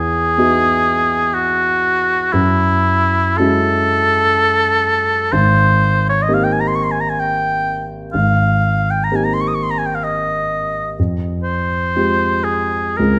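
A close-miked oboe with light vibrato sings a pastoral, dreamy melody from the start, floating freely in a rubato 3/4 over the dark, mellow accompaniment of a grand piano, both up front, moving through rich ninth harmonies in a classical, impressionist duo that sits in a moderate recital-hall reverb.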